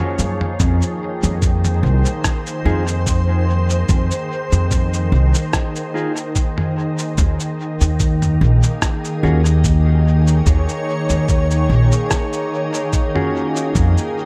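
Spacious and meditative, this ambient dub cut from a longer piece moves at 73 BPM with a light 16th-note swing. A soft, detuned organ-like pad holds sustained chords through ensemble chorus and its own reverb, moving from Ebm11 to Fm7 and then to Eb7sus4 at 7.2 seconds. Beneath it, a woody, growly pizzicato upright bass sits up front. A tape-warm lo-fi kit of cabasa, rim click and toms trails dub echo from the start, and a muffled, thumpy electronic kick joins it at 0.6 seconds. From 2.7 seconds, a dark, clean electric guitar adds quiet fingered stabs in the background, also touched with dub echo.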